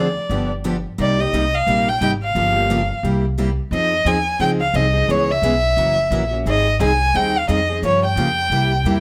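From the first moment, a bowed violin carries the melody up front, with two picked steel-string acoustic guitars and a plucked upright bass underneath, in a brisk swung jazz manouche groove at 176 BPM in 4/4. The violin has a nasal, slightly boxy voice with smooth, even vibrato, while the plugged-in parlour guitar gives a warm accompaniment and a bright concert guitar sits in the background. The upright bass, on gut strings, sounds woody and thumpy. The harmony starts in C minor over chords like G7, Cm7 and Gm7b5, then moves to F minor at 3.7 s, passing through Fm7, Dbm7, Gb7 and Abmaj7. Moderate studio reverb gives the quartet a sense of room, and the mood is virtuosic yet bittersweet in this short section cut from a longer piece.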